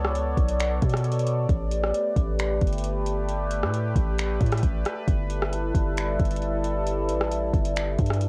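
Atmospheric cloud-rap hip hop at 134 BPM in 4/4 with a half-time feel, this short cut from a longer piece drifts in an ethereal, melancholic mood, tuned slightly sharp to A4 = 443 Hz. A sweeping, resonant pad of detuned sawtooth and triangle tones carries sustained chords from G3 to D5 throughout, its wave-folded, evolving character shaped by a slow attack, a filter swell, a long release, chorus, phaser, sidechain pumping and a cassette-tape patina. Beneath it, a long, deep 808-style bass with a sine-like, mellow tone sits between G1 and B2, its fast attack giving way to a decay. A smooth, electronic R&B kit mixes a soft kick, metallic hi-hats, rim clicks and finger snaps, re-recorded in a small room and colored by cassette tape. The harmony moves from Bm9 to A9sus4 at 1.5 seconds and settles on G69 at 5.1 seconds, with pad, bass and drums all placed up front under light reverb in a homespun cassette sound.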